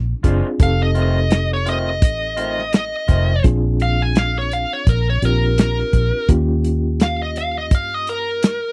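Riding a straight-eighth 84 BPM groove with a light sixteenth-note swing, this rollicking, soulful blues excerpt sets a muffled, tight-kicked drum kit and a round, punchy foam-muted bass up front beneath a reedy, slightly out-of-tune electric piano with fast tremolo and twangy, slightly broken-up guitar stabs that stop at 3.3 seconds, while a bright, smooth overdriven lead guitar enters at 0.6 seconds to carry the melody over Bb7, F7 and Eb7 changes in a dry, close 1970s-style studio sound.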